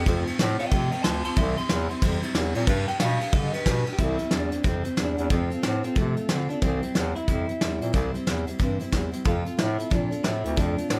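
Lightly reverberant and roomy, this rollicking, retro rockabilly excerpt swings along on a soft brush drum kit with dark cymbals and a tight kick, a warm, distant bass clarinet carrying the bass line, a full-bodied picked steel-string dreadnought playing the chords, and a twangy, slightly broken-up electric guitar through a small old amp with analog delay that joins at 0.6 seconds to carry the melody, while a clean electric guitar solo runs through the opening four seconds.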